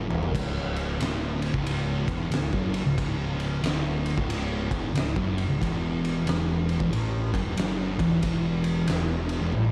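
A swung, lumbering 4/4 groove at 91 BPM drives this short stoner and doom metal excerpt in C# minor, hypnotic and ominous as it moves from C#m to Esus24 at 5.6 seconds, with drum fills at the very start and again at 9.5 seconds. An oversized, low-tuned acoustic kit sits up front with a boomy kick, fat snare, toms, and dark, muffled crash and ride cymbals, its sound gritty and saturated with a rolled-off top in a bright stone room. Beneath it, three thick, picked fuzz guitars grind the low riff, one with added distortion, another double-tracked and entering at 0.4 seconds, all set quietly back, while a growly, overdriven bass holds the low end in a dark production with moderate reverb.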